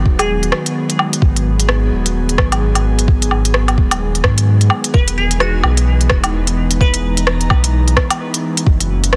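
A breathy, detuned pad and a round sine sub bass open this nocturnal, wistful future garage excerpt at 129 BPM in 4/4, both pumping under sidechain compression over a G#m7 chord. A soft electronic kick arrives almost at once. From 0.2 s a tape-warm electronic kit with crisp hi-hats, rim clicks and woodblock sits up front with a 16th-note swing, its snare lightly clipped, while both drum parts carry studio reverb. A glassy wavetable pluck flickers briefly at the start, then returns at 4.9 s as the harmony moves to Emaj7, its crystalline, ring-modulated tone carried by chorus and tape echo. The pad's slow attack and long release keep the chords hazy, and the harmony turns to F#7 at 8.7 s. The mix is dense and heavily limited with light reverb, tuned slightly low to A4 = 439 Hz.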